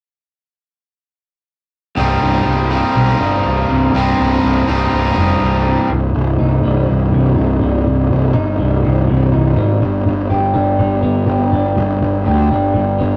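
A straight 4/4 rock pulse at 123 BPM drives this dark, cathartic cut from a longer piece in C harmonic minor, where a punchy, fuzz-soaked picked bass sits up front with a slightly broken-up guitar through a small old amp playing arpeggios from 2.0 to 13.2 seconds, while a bright overdriven guitar riff stands out until 5.9 seconds, the harmony moving from Cm to G at 9.8 seconds in a rough rehearsal-room sound with moderate reverb and saturation.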